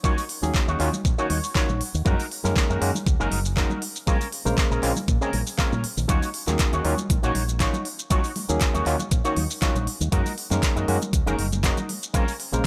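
The knocking electronic kick drum sits up front and drives this groovy, cosmic nu-disco excerpt at 119 BPM in 4/4, with a light 16th-note swing in E-flat dorian. Around it, a produced pop kit adds handclaps, shaker and crisp hi-hats, while damped, thick-skinned congas played with soft hands sit in the background. A fingered electric bass with an envelope filter enters at 0.4 seconds, warm and direct in its low register. A barky, bright tine electric piano carries the chords with sidechain pumping and trailing dub echoes, as an envelope-filtered electric guitar plays a twangy, picked riff through ensemble chorus, low-pass filtering and dub echo, with a short clean guitar fill at 1.1 seconds. The chords move through Ebm7, Gb6 and Bbm7 under a light reverb.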